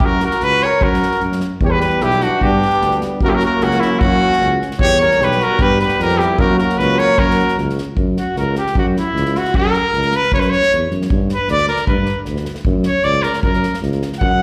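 An up-front, clear trumpet carries the melody with light vibrato and slapback echo, taking a solo from 8.0 s, in this virtuosic, bittersweet Balkan brass band piece that speeds up as it goes, backed by a mellow tuba bass, a punchy acoustic kick-and-snare kit played with bundle sticks, a warm flugelhorn second line with plate reverb until 7.6 s, and euphonium and trombone accompaniment in the background from 1.6 s, the whole captured at a live gig through the venue's PA with recital hall reverb.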